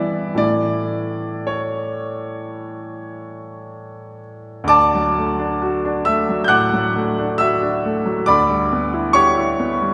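Romantic classical nocturne for solo piano in D major, dreamy and tender, moving slowly between 54 and 69 BPM in a rubato 4/4. A clear, open grand piano sits up front with long sustain, ranging from D2 to G6, and is bathed in a wet church reverb with a 3.2-second decay. This brief cut from a longer piece shifts into a new section at 4.7 seconds, settling on D before an Em7/D colour at 8.3 seconds.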